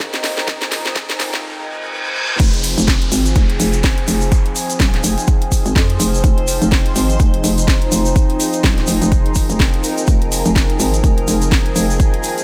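Bass house with a bouncy, swaggering mood and a swung groove, taken from a longer piece. A short build-up opens it, with a drum fill, a riser and a reverse cymbal from the house kit and effects layer, before the drop lands at 2.4 seconds and a grainy, mellow acoustic tube shaker joins. Up front, a punchy layered kick pairs with a hollow, knocking FM bass that has a fast attack and decaying notes, roughened by overdrive and shaped by sidechain pumping. The kit adds a cracking snare, metallic hi-hats and crash cymbal, while the sound-effects layer of riser, reverse cymbal and downlifter runs until 6.2 seconds. Behind them, a sweeping, resonant pad of detuned sawtooth and wave-folded tones holds sustained chords with a filter swell, chorus and phaser, and a cloudy, blurred granular pad sits higher with its own built-in reverb, both breathing with sidechain pumping. The mix is dry and loud, with a high-pass filter trimming the lowest end.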